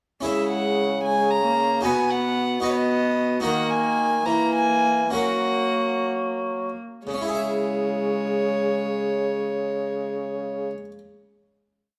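A moderate stone-room reverb, lasting about 1.4 seconds, gives this brief, complete piece a courtly yet rustic air. It is a Renaissance-style consort dance in C# dorian and 6/8, moving at 58-76 BPM in dotted quarters with a straight feel. A single bowed violin carries the melody up front, its gut-string tone rich and reedy in a period style. Beneath it, a solo viola plays smooth-topped, sustained chords in the rhythm of the tune. A bassoon supplies a sustained bass with passing notes, its sound warm with light vibrato and a roomy, distant quality. A close-miked harpsichord adds brilliant rolled chords in the Italian style on three sets of strings. The harmony moves from C#m through B, D#m and F#, and the tempo slows from 2.6 to 7.1 seconds before a final C#m chord arrives at 7.1 seconds and rings out to the close.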